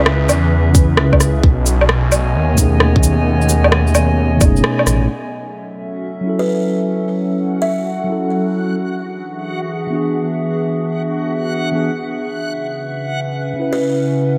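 A nocturnal, wistful future garage fragment opens with a mellow tine electric piano under dub echo and a warbling, lo-fi tape-like pad, both pumping to the sidechain, while a menacing, saturated detuned saw bass, a tight, up-front electronic kick and a produced kit of electronic rim click, cabasa, shaker and woodblock carry the swung groove until the kick drops out at 4.6 s and the bass and percussion stop near 5.1 s, leaving a bright, reversed swelling texture and a buzzing, woody kalimba melody with digital delay to drift over the pad and piano.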